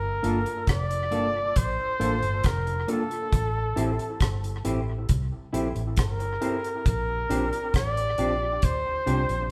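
The band plays live in one room, wrapped in a wet, large studio reverb that lends the mix a roomy glow. This brief lovers rock reggae passage, cut from a longer piece, moves at 68 BPM in a straight 4/4 in G dorian, with a bittersweet, longing mood. A warm flugelhorn carries the melody between A4 and D5, sitting up front with a pop-style vibrato, while a vintage muted fingered electric bass holds the low end with a dark, round, foam-muted tone. A worn, slightly out-of-tune tine electric piano supplies clean accompaniment with dub echo, and an electric guitar through a small old amp adds compressed, twangy, slightly broken-up stabs. The deep reggae drum kit, dry and up front with a tight kick, rim click and hi-hat, anchors the changes from Gm9 to Am7 at 3.3 seconds and on to Bb69 at 6.9 seconds.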